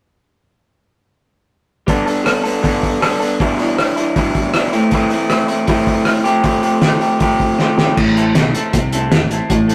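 Indie rock excerpt at 158 BPM in A minor, restless and bittersweet, where a slightly broken-up guitar through a small old amp plays an up-front riff over Gadd9, Em7, Am and Fadd9 alongside a muffled, cloth-damped drum kit with dark cymbals, a fat snare and tight kick, until a drum fill at 7.6 seconds leads into a new section at 8.0 seconds, where picked electric bass joins, followed at 8.2 seconds by an overdriven raw garage guitar riff, all in a rough rehearsal-room sound with light reverb and tube saturation.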